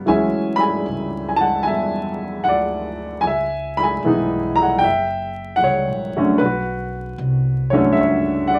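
An up-front upright piano with a woody tone carries the chords of this intimate, late-night jazz ballad, moving through Dmaj9#11, C#m9, F#7b9 and Bm9 at a relaxed 76 BPM with a gentle swing in 4/4. Beneath it, a pizzicato upright bass on steel strings adds a growly, low foundation, sitting well under the piano in the mix. A moderate club reverb and a layer of vinyl crackle give this brief excerpt a warm club atmosphere.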